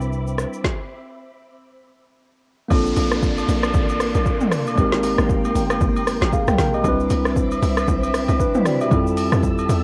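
Dry and close, with the soft grain of a home cassette recording, this relaxed amapiano cut from a longer piece moves at 116 BPM in 4/4 with a lilting swing on the sixteenths, centred in Bb lydian. A clean, warm tine electric piano heard through built-in speakers and a silky, vintage string machine, mellowed by phaser and ensemble chorus and given a cassette tint, carry chords from Cmaj9 through Bbmaj9 and Abmaj9, back to Cmaj9 and on to Fmaj9, the strings swelling in with a slow attack. An up-front, layered deep house kit with a punchy kick, woody snare, dark hats, rim click, shaker and toms anchors the groove, though the music halts in a stop from 0.6 to 2.7 seconds. At 2.7 seconds the drop lands: a hollow, bouncy FM log drum bass with a noise layer and fast, decaying notes enters low, joined by acoustic, band-limited agogo bells. A faint electronic downlifter sweeps beneath the opening of this new section.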